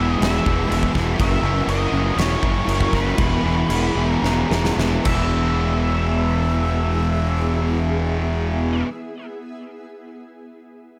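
A thick wall of picked electric guitars and an up-front, growly fuzz bass opens this blissful, wistful slice of shoegaze and dream pop, cut from a longer piece. A dark octave-fuzz lead guitar carries the melody with analog delay, while a hollow-body semi-hollow guitar with analog chorus, a very quiet raw garage guitar and a bright, double-tracked distorted guitar in the low register all play riffs beneath it. A shimmering, ethereal pad sits in the background with slow-attack, detuned, granular chords carrying an octave-up sheen, as the harmony moves from E through F#7 and Emaj7 back to E. A huge arena drum kit with a fat snare, punchy kick and bright crash enters at 0.2 seconds, and the music slows down from 1.2 seconds, with a drum fill from 4.2 seconds leading into the next section. The drums stop at 5.2 seconds, leaving the guitars, bass and pad hanging in a dreamy mix soaked in plate reverb.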